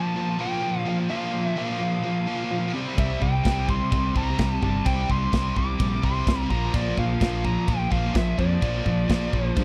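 Heavy metal at 128 BPM in a straight 4/4, this aggressive, epic passage is cut from a longer piece. From the start, a nasal lead guitar with a parked wah carries the melody between D5 and D6, its overdriven tone given a touch of tape echo. Beneath it, three distorted guitars play the riff: a bright, heavy high-gain part, a scooped high-gain part sitting lower, and a compressed, double-tracked guitar tucked in the background. At 3.0 seconds a punchy, overdriven picked bass with a warm, direct tone joins alongside a polished, airy studio drum kit with a tight kick, medium-tuned snare and crash cymbal. The harmony moves from Bb5 to C5 and then to Bb, all captured in a dry, close recording with a 1970s studio character.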